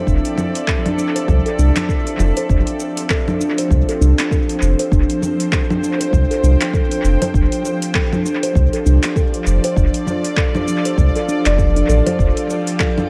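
Meditative and earthy, this organic downtempo excerpt moves with a gentle swing in 4/4 as a steel tongue drum rings out pure, soft arpeggios through tape echo from the very start. Beneath it, a string-like, bowed-sounding drone holds sustained chords with slow-attack vibrato and built-in reverb, breathing with sidechain pumping as the harmony settles from F onto Fadd9 at 2.5 seconds. A faint, glassy texture of drifting overtones, shimmering with chorus, sits in the background at the opening and returns only briefly near the close. Up front, a round, sine-like sub bass anchors the low end with tube saturation, while an electronic kick with a deep, tape-warm thump joins a deep house kit of congas, handclaps, shaker and metallic hi-hats touched by analog delay. The mix has an echo-heavy, lightly reverberant digital ambience, with some lossy compression artefacts, and the passage is cut from a longer piece.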